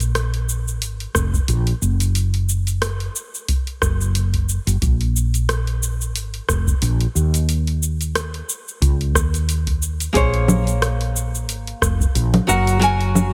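A woody fretless electric bass, growly and round under an analog chorus, carries this wistful sunset chillout excerpt in Bb minor at 90 BPM, with a swung sixteenth feel and a layered deep house kit of congas, hi-hat, rim click and shaker running throughout. A dry, tape-tinged electronic kick enters at 1.1 seconds, while the chords move from Bb5 through Dbsus2 and Bbm9 to Gb. A fingerpicked nylon-string guitar with digital delay arrives at 10.1 seconds, and the whole mix sits in a digital ambience.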